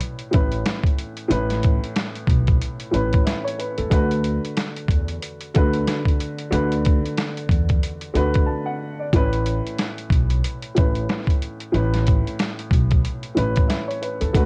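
A swung 16th-note boom-bap hip-hop groove at 92 BPM in A major carries a warm, confident mood, built on a compressed, gritty, pitched-down sampler-style kit with a thumpy kick and medium-tuned snare up front, beside a dark, mellow upright piano with short sustain and filtered cassette-tape color moving from Aadd9 to D6 and back, while a growly pizzicato upright bass with woody steel strings joins at 0.3 seconds, the whole piece set in light reverb on a home cassette recording with a brief break at 8.5 seconds in this cut from a longer track.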